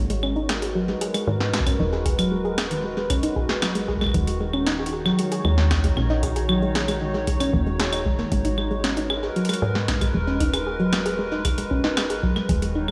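This short excerpt of cerebral, melancholic IDM opens on a hollow, airy pad holding sustained chords, a soft round pluck spinning dark arpeggios through chorus and digital delay, and a woody FM bass with a mellow, tube-saturated tone. An analog-style electro drum machine joins at 0.1 seconds with claves, metallic hats and a punchy snare, its hits echoing through a digital delay. A deep, tape-warm electronic kick drum enters at 1.6 seconds and drops out at 12.6 seconds. The harmony moves from G#m9 to D#m7 and back to G#m9. Light digital ambience sets the parts in a modest studio space, giving the steady straight-time groove a reflective, introspective cast.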